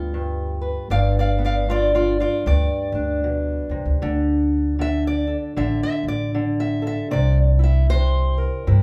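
A boxy, fingerpicked parlour steel-string acoustic guitar carries the melody up front as a solo through this short, soulful and gritty excerpt of acoustic country blues at 77 BPM in G mixolydian, swinging over G7, D5 and C7, while a woody pizzicato upright bass holds down the low end close by, the duo captured playing live in one room with light reverb.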